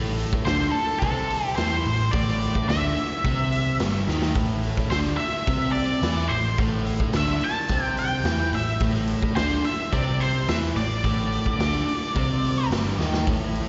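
Brooding and gritty, this blues rock power trio excerpt with a southern rock edge rides a straight 108 BPM groove in A minor over a single A minor chord, as a double-tracked fuzz guitar riff with slapback echo sits up front beside a dark, round, foam-muted picked bass, a raw garage drum kit with a punchy kick, saturated stone-room pump and fills at 4.1 and 13.0 seconds, and a dark octave-fuzz lead guitar carrying the melody through slapback and tape echo, all heard as a live gig through the venue's PA with a rolled-off, recital-hall haze.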